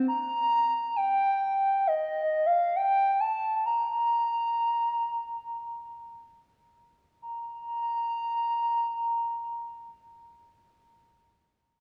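Dream pop in free time, ethereal and blissful, this fragment cut from a longer piece features a lone hollow, woody synth lead with a clarinet-like voice, soft and detuned over a noise layer, sitting up front as it sustains a melody between Eb5 and Bb5 from 0.1 to 10.4 seconds, shimmering with chorus, vibrato, plate reverb and tape echo, all caught in the small-room ambience of a cassette home recording.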